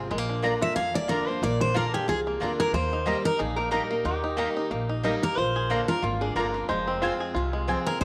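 Set in a moderate echo-chamber reverb, this haunting, rustic bluegrass fragment swings along at 182 BPM in 4/4 over Bb, Eb and Fm chords: an up-front, warm jumbo acoustic guitar carries the picked melody over a bright dreadnought guitar's full-bodied accompaniment, thumpy gut-string pizzicato upright bass, twangy fingerpicked banjo arpeggios and woody double-string mandolin stabs, while a metallic, nasal lap resonator guitar adds a slide second line from 3.4 to 7.3 seconds.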